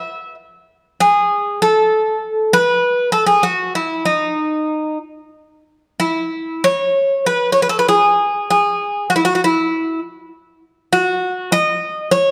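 Longing and passionate, this short fado excerpt in E major moves at a rubato 98 BPM in 4/4, tuned to A4 = 436 Hz. A lone Greek bouzouki carries it from 0.0 to 12.3 s, its picked double strings sounding bright and metallic, with some octave-doubled courses, as it sits up front and ranges from D#4 to E5. A moderate recital-hall reverb and a dark production surround the instrument's glinting tone.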